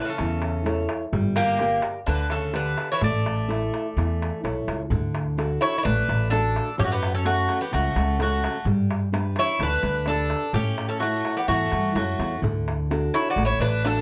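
Joyful and bright, this Greek folk passage for bouzouki band moves in a straight 4/4. An up-front bouzouki carries the melody through plate reverb while a second bouzouki plays a lower line, both with metallic doubled strings, some paired at the octave, and a fingerpicked steel-string acoustic guitar fills out the accompaniment. From 0.2 seconds a woody, thumpy pizzicato upright bass sits forward beside a crisp, band-limited metal-shell darbuka played with hard hands; the small room lends modest ambience, and a new section begins at 4.9 seconds in this cut from a longer piece.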